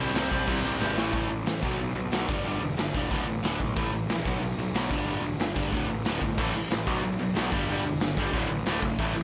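Energetic and rowdy, this punk rock clip in 4/4 with a straight feel charges through a chord loop that opens on C5 and A5, then cycles through B5, G5, D5 and A5. An overdriven electric guitar sits up front with a bright, picked riff from start to finish. A second electric guitar, distorted, compressed and scooped, plays its own riff from the background; it drops out at 1.1 seconds and returns at 6.4 seconds. Underneath, a fuzz-laden picked electric bass, direct and amped, adds a growly overdriven edge. A raw garage drum kit comes in almost at once, saturated and gritty with a punchy kick, a medium-tuned snare, crash and hi-hat in a pumping stone room with a rolled-off top, and a short fill closes the opening section. The overall sound is dry, with little reverb, and the clip is cut from a longer piece.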